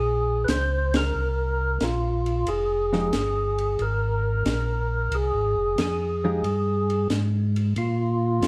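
Heard from further back in a room with moderate reverb, this soulful, late-night soul jazz organ trio excerpt swings in 4/4 as a fat, lightly overdriven tonewheel organ with third-harmonic percussion and slow rotary speaker carries the melody over a round, mellow tonewheel organ bass with key click, while a dark, small-room cocktail drum kit with a high-tuned snare, hi-hat and ride cymbal joins at 0.5 s just before an early band accent, and a clean, compressed hollow-body jazz guitar adds fingered accompaniment from 2.9 to 6.4 s.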